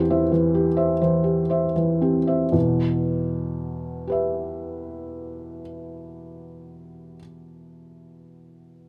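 A felt-muted upright piano plays alone through this short fragment of neoclassical minimalist music, its soft, mellow tone sitting close and up front. The mood is intimate and melancholic, moving in a slow, rubato 6/8 that gives the phrases a gently unhurried sway. The opening passage slows as it goes, resting on a C chord over E before settling into E minor at 2.5 seconds for the longer second passage. The piano spans from E2 up to E5, letting deep bass notes sit beneath the higher voicing. Close, detailed miking and very little reverb keep the natural, hushed sound of the felted hammers in clear focus until the piece is cut off at 8.9 seconds.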